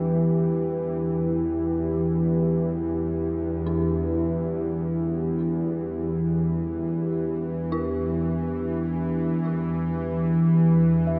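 Steeped in a cavernous cathedral reverb, this unsettling dark ambient drone in E minor drifts in free time, cut from a longer piece and holding on E minor throughout its 11.2 seconds. Up front, a tense, string-like bowed drone rumbles low under a filter sweep, while a deep, moody pad of detuned, wave-folded sawtooth and sine tones sustains slow-attack chords above it. A bronze singing bowl fades in with a metallic, slowly beating ring struck by felt mallet, and an eerie, inharmonic FM bell plays faint chorused arpeggios in the background, trailing into a diffuse delay.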